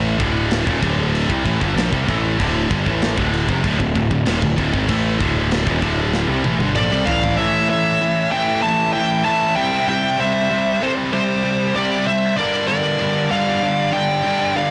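Dark and aggressive, this heavy metal passage at 96 BPM in straight 4/4 is cut from a longer piece and moves through Dm, A, C and Gm. Two bright, scooped, high-gain rhythm guitars drive the riff from the start to the end, one of them sitting in the background. Underneath, a growly, overdriven fuzz bass sits up front, while a tight acoustic metal kit with a medium-tuned snare, crash, kick and toms plays in a big room until 7.4 seconds, closing its run with a fill. At 6.8 seconds a high-gain lead guitar takes the melody, up front, shadowed by a darker second line lower in pitch. From 7.4 seconds a double-tracked, compressed fuzz guitar joins the riff for the second section as bass and drums drop away, and the whole recording sounds blown-out and overdriven, with light reverb and a muffled top end.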